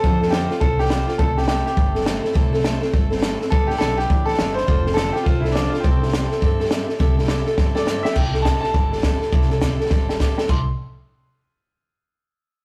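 Rowdy and retro, this brief rockabilly excerpt swings at 207 BPM in C major, with a bright upright piano carrying the melody over full-bodied picked steel-string acoustic guitar, thumpy pizzicato upright bass with gut strings, and an up-front compact cocktail drum kit with dark cymbals, a high-tuned snare and punchy kick, all in a rough rehearsal-room sound with light reverb and warm saturation, as drum fills land at 7.6 and 9.9 seconds around the chords F6, C6 and G6.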